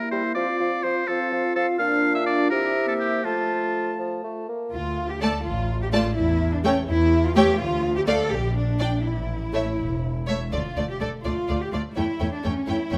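The excerpt opens with a bright woodwind passage in F major, where a present oboe, an airy straight-toned flute and a dark clarinet share the upper lines over distant, soft-attack French horn chords and a punchy, mellow bassoon. At 4.7 s this dramatic, urgent, quick classical-period movement in 6/8 at 83 BPM moves to D minor, as a clear double bass section and a woody, up-front cello section take over the low end. From 5.2 s a rich violin section carries the melody above a second violin line and a viola accompaniment, all bowed with vibrato in a moderate scoring-stage reverb.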